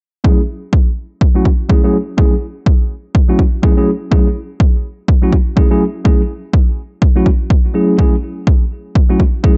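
Deep house with a hypnotic, deep mood, cut from a longer piece and riding a swung 4/4 groove. A mellow tine electric piano plays stabs on an F#m9 chord from 0.2 to 9.6 seconds, its clean tone placed up front and colored by sidechain pumping, a low-pass filter and delay, with a filter sweep running across its whole span. An electronic kick drum drives the track over the same stretch, punchy and overdriven with an analog character, sitting louder than the piano. The piano carries a slightly boxed quality, as if heard through built-in speakers. A digital ambience surrounds the parts, its sound rolled off above 8.0 kHz for a dark, enclosed space.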